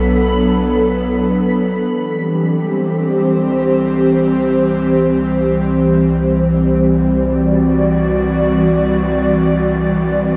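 Peaceful and warm, this ambient excerpt floats in free time, steeped in a huge, wet reverb that places it in a vast, echoing space. Up front, an airy, breathy pad holds sustained chords across the whole 10.4 seconds, its detuned layers given a mellow sheen by chorus and a slow attack with long release. Beneath it, a deep, rumbling drone carries the bass with a dark, ominous weight and its own built-in reverb, fading in from 1.9 seconds. A soft, pure synth bell plays barely audible arpeggios with tremolo and chorus until 4.0 seconds, while a reversed, swelling granular texture adds a bright, dreamy shimmer only during the opening moments. The harmony rests on Bm7 before shifting to C at 1.9 seconds, opening into the longer second passage.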